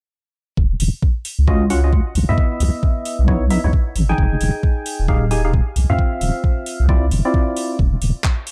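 A soulful, late-night two-step UK garage excerpt at 133 BPM with a swung 16th-note feel, built on a deep, wobbling sine-and-triangle bass with chorus and tube saturation and an up-front knocking electronic kick from 0.6 seconds, joined by a garage kit of handclaps and metallic hi-hats set lower in the mix, while a hollow, mellow organ-like stab enters at 1.5 seconds through lush chorus and delay under a filter sweep, moving across Ebm9, Dbm9, Fm9 and Dm9 chords in a dark, tape-toned, dry production.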